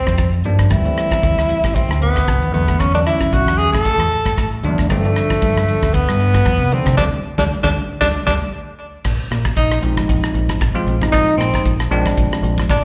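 Driving and intense, this electric jazz fusion excerpt at 115 BPM with a light sixteenth-note swing features an up-front, smooth-topped tenor saxophone with light vibrato and slapback tape echo carrying the melody, a deep, round dub bass played with the fingers, a dry, damped 70s drum kit with dark cymbals and a fat snare, and a bell-like tine electric piano comping over suspended ninth chords, all heard through a live venue's PA with recital-hall reverb, passing through a band accent and drum fill before the saxophone takes a solo at 9.1 seconds over a Bb9sus4.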